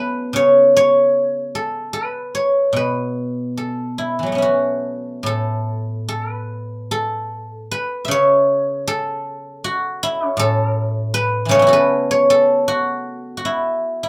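Chinese traditional solo plucked-string music in an elegant, pastoral mood, this short excerpt features a lone guzheng played with fingerpicks, its ringing, silvery acoustic tone sitting up front in light reverb as it moves freely in rubato around 70-80 BPM in the A gong mode, ranging from A2 to E5 and shifting to a new section at 5.3 seconds before being cut off at 14.1 seconds.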